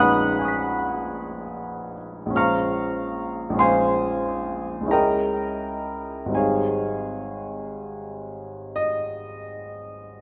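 A clear baby grand piano carries this impressionist solo piece alone, its natural tone and long sustain placed up front. The mood is dreamy and luminous, set in Ab major with a slow, rubato sway in 9/8, the dotted-quarter pulse drifting between 35 and 53 BPM. The piano spans a broad range from Ab1 up to B6, moving through rich harmonies: B69/Bb at the opening, Bbm9 at 2.4 seconds, Dbm6, and finally settling on Abmaj7 at 6.3 seconds. A moderate reverb suggests a large scoring stage and lends the sound a gentle halo. Tuned slightly below standard pitch, this brief portion is cut from a longer work.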